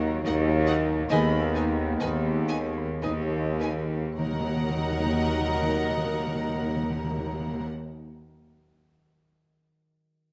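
In a rubato 3/4 that slows through the opening 4.2 seconds, between 49 and 74 BPM, this melancholic, yearning classical excerpt in Eb minor moves from Ebm to Abm over Eb and back, with dark French horns and smooth-topped trombones holding very quiet sustained chords over a ringing, fingerpicked harp and a bass line of clear cellos, double basses and a present tuba. From 0.3 seconds, floating sul tasto violins carry the melody while woody, distant second violins and very quiet violas add a lush vibrato bed. At 1.1 seconds, a mellow clarinet, an airy flute group and a faint bassoon join with added lines, and close, dry calf-head timpani enter, all set in a moderate recital hall reverb.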